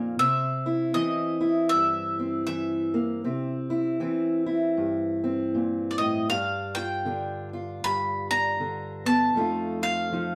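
A bright, picked bowl-back mandolin carries the melody up front, its double strings ringing out in a high register from D5 to B5 across the whole 10.3-second clip. Beneath it, a fingerpicked steel-string acoustic guitar with a boxy, parlour-sized tone provides the accompaniment, also placed up front and sitting lower, from F2 to F4. The piece is acoustic country blues with a rollicking yet laid-back mood, moving at 79 BPM in 4/4 with a swung eighth-note feel in C mixolydian. The harmony rests on C before shifting to G7(no3) at 6.3 seconds and F7 at 9.4 seconds. A wet studio reverb with a short decay places the pair a little further back in the room, and the clip is cut from a longer performance.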